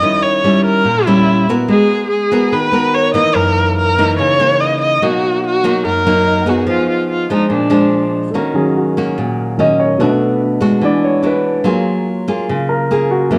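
Heard in a moderately reverberant large studio, this recording keeps all three instruments up front. It is a wistful, smooth bossa nova in Eb minor at 144 BPM in a straight 4/4, cut from a longer piece. A single bowed viola carries the melody with a dark tone, expressive vibrato and sliding portamento. Beneath it a full-bodied, fingerpicked nylon-string guitar in classical style supports the whole passage through chords such as Eb7b9, Abm9 and Bmaj7. A grand piano with a natural, warm tone joins at 6.3 seconds, and after the viola ends at 8.1 seconds the piano takes a solo over the guitar, moving through Ebm7, E9 and Gbmaj9.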